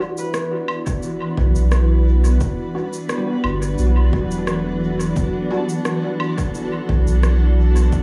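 A deep, round sine sub bass sits up front from 1.4 seconds in this spacious, meditative, lightly swung ambient dub excerpt at 87 BPM in E minor, beneath a cloudy, blurred granular pad sustaining an Em9 chord in its own reverb, a punchy, overdriven electronic kick, fingerpicked concert harp arpeggios ringing in the background through dub echo, a muted, dark, detuned sawtooth chord stab with phaser, subtle chorus and dub echo that falls away at 5.7 seconds, and an echoing electronic shaker, rim click and woodblock.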